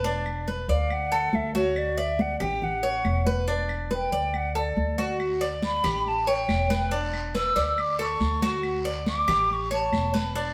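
A bright, metallic Cuban tres picks up-front arpeggios over woody pizzicato upright bass to open this relaxed, sunny Cuban son and guajira excerpt, joined by damped, soft-handed congas, background claves and an airy, hollow silver concert flute carrying the melody with vibrato, while a raspy guiro enters at 5.2 seconds, all played live together in a reverberant stone room.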